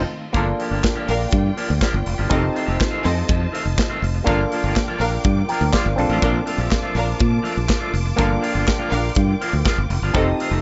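Driving and sultry, this disco excerpt opens with a brief band accent before a straight 4/4 groove takes hold at 0.3 s, cycling through Gm7, F7 and Bbmaj7. A growly, punchy fingered electric bass sits up front and leads the mix, joined at 0.3 s by a polished acoustic drum kit in a small, airy room, with a tight kick, medium-tuned snare, hi-hat and handclaps. An auto-wah clav adds stringy, mellow comping through a combo amp, while a picked electric guitar through a small old amp contributes a twangy, slightly broken-up edge. Behind them, a lush bowed string ensemble holds smooth sustained chords with vibrato, and a second, more distant string line weaves in from 0.3 s to 10.2 s. The sound is dry and close, with little reverb and the top end rolled off above 7.8 kHz.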